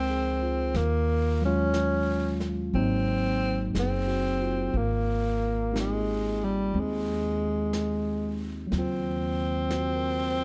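Tender and intimate, this slow jazz ballad at 60 BPM swings gently in 4/4, a short cut from a longer piece that settles into Ab major at 4.8 s over a dark production with light reverb. Up front, a breathy tenor saxophone carries the melody with mellow subtone, vibrato and scooped notes, bathed in plate reverb, while a bright, clean tine electric piano comps through chords like Fm7, Ab7 and Abmaj7. A woody, thumpy pizzicato upright bass on gut strings anchors the low end, and a soft, airy brush drum kit on snare and hi-hat joins at 0.7 s.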